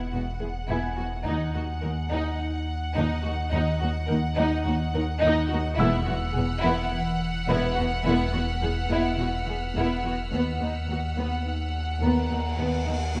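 A slow, straight 53 BPM pulse in 4/4 carries this eerie, uneasy suspense cue, where a huge impact opens and a bright cymbal swell arrives at 11.4 s over a deep, punchy sine sub-bass drone, a woody, dry marimba riff, warm cellos, softly bowed double basses and a dark, boxy grand piano texture in the background, while sul tasto violas and a floating second violin line support a rich, intimate violin melody on F#5, joined at 5.8 s by a faint high violin texture, all in a moderate concert hall reverb.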